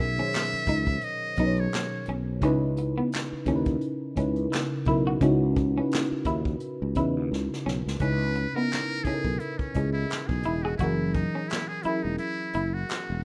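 An 86 BPM groove in 4/4 with swung sixteenths sets up this smooth, soulful neo-soul and R&B passage in C# dorian, taken from a longer piece. A vintage brush kit enters at 0.3 seconds with a punchy kick, a medium-tuned snare, hi-hat and handclaps, its top end rolled off in a natural studio room. Beneath it a sustaining fretless electric bass growls low, while a mellow FM electric piano sits up front, round, dark and full-bodied with a soft noise layer, fast decaying attacks, chorus and phaser, moving from Bmaj13 to C#m7 and later F#9. An electric guitar through a small old amp adds a slightly broken-up, picked second line, and a trumpet with a metal mute opens with a brief phrase. After a drum fill at 7.3 seconds, the muted trumpet returns at 8.0 seconds for a close-miked, jazz-style solo, brilliant yet thin and buzzy, with breathy vibrato, all wrapped in light reverb and the loose feel of a rough home demo.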